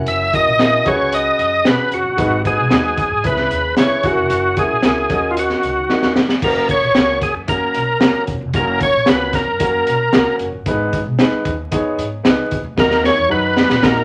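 A straight 4/4 groove at 113 BPM drives this passionate, uptempo 1960s-style soul excerpt, carried by a crunchy breakbeat drum kit that sits up front with a tight kick, a high-tuned snare, dark cymbals and a saturated, rolled-off top, adding fills at 5.9 and 12.8 seconds. Beneath it, a pizzicato upright bass on gut strings gives a woody, thumpy low end with tube saturation, while a grand piano with audible action noise fills in the chords with a boxy, intimate tone. The overdriven tonewheel organ leads the melody, thick and gritty with key click, third harmonic percussion and chorus vibrato from a stationary speaker, standing at the front of the mix. The harmony moves through seventh chords such as F#7, G#m7 and C#m7 before settling at 6.4 seconds into a second section built on F#, G#m and D#m. A wet studio reverb and a layer of vinyl crackle give the whole recording a vintage, roomy character.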